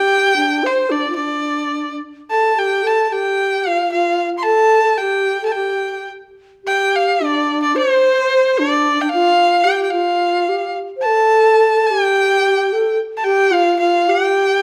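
A moderate recital-hall reverb surrounds this pastoral, graceful fragment of Chinese traditional chamber music, which moves freely in rubato over a 2/4 metre and shifts into a new section at 6.7 seconds. Up front, a single bowed erhu carries the melody with a clear, biting, earthy tone, light vibrato and sliding portamento. Beside it, a low, end-blown bamboo xiao plays a second line, airy and tongued with its own vibrato, for the full 14.6 seconds.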